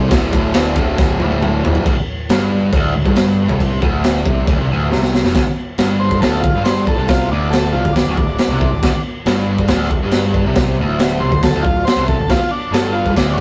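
A double-tracked, bright fuzz guitar riff and a punchy, overdriven picked bass open this rowdy, raw garage rock excerpt at 138 BPM in a straight 4/4, moving from D5 to D7sus4 as an up-front, gritty acoustic drum kit with dark cymbals and a pumping small-room sound fills at 1.0 seconds, before a buzzy vintage combo organ with light vibrato enters at 6.0 seconds for an overdriven solo, all captured in a rough rehearsal-room recording with light reverb and a saturated, rolled-off top.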